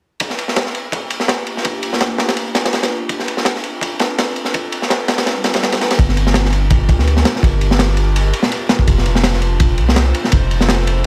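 A crunchy, saturated breakbeat drum kit drives this dark, nostalgic drum and bass excerpt at 166 BPM in G minor, its tight kick, high-tuned snare and dark ride cymbal sitting up front with a gritty, rolled-off top and a lightly swung 16th-note feel. Behind it, a warbling, lo-fi pad built from detuned square, triangle and sawtooth tones holds slow-attack chords from 1.0 seconds, colored by chorus, phaser and its own reverb, alternating between Gm7 and F6. A very quiet electronic swell arrives at 5.4 seconds to usher in the drop at 6.0 seconds, where a deep, long 808-style sine bass enters up front with a fast attack and a mellow decay. The whole excerpt sits in a small room ambience.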